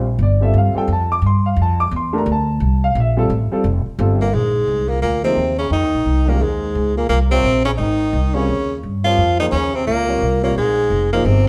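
Cool and intense, this jazz waltz excerpt swings at 173 BPM in 3/4, opening with a warm baby grand piano and a woody, growly pizzicato upright bass in G dorian before moving to Bb dorian at 4.3 s. There, a clear tenor saxophone takes the melody with light vibrato, scooped notes and plate reverb, joined by a vintage-toned trombone on a second line beneath it. The recording is heard from further back in a reverberant studio room, with the piano dropping out at 11.3 s.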